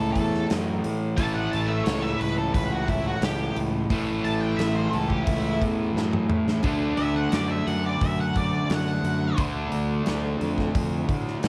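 An octave-fuzz lead guitar opens this blues rock and southern rock passage, its picked, distorted, shadowy tone carrying a solo melody over a doubled, compressed, overdriven rhythm guitar riff and a growly, fuzzed fingered bass, with a big acoustic rock kit joining at 0.2 seconds. The mood is driving and raunchy, at a straight 88 BPM in 4/4 and in A major, tuned slightly below standard pitch. The double-tracked rhythm guitar sits up front with a dark, gritty edge, while the bass comes across bright and punchy, blending direct and amped sound. The drums fill out a big room with hi-hat, kick, a medium-tuned snare and toms, and a drum fill at 6.0 seconds leads the harmony from A to D. The lead guitar drops out at 9.4 seconds as the chord shifts to D minor, leaving the riff, bass and drums to carry this excerpt, cut from a longer piece, to its end in a small-room ambience.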